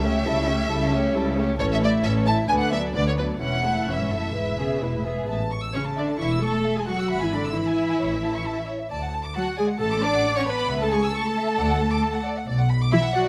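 Moving in a straight 4/4 at a quick 134 BPM, this spirited, cheerful classical-period movement for string orchestra sits in A major and is cut from a longer piece. An up-front first violin section carries the melody with a rich, expressive vibrato and soft attack, while a second violin section adds a darker, woody second line. Violas fill in the accompaniment with a smooth, even tone, and the cellos and double basses share the bass, both lush and bowed, with the basses dropping out at 12.8 seconds. The harmony opens on A7/C# and moves through A, Bm/D and E before a new section at 5.3 seconds travels through D and A/C# to close on Bm. Close, detailed microphones capture the ensemble on a scoring stage with a moderate reverb of 1.6 seconds.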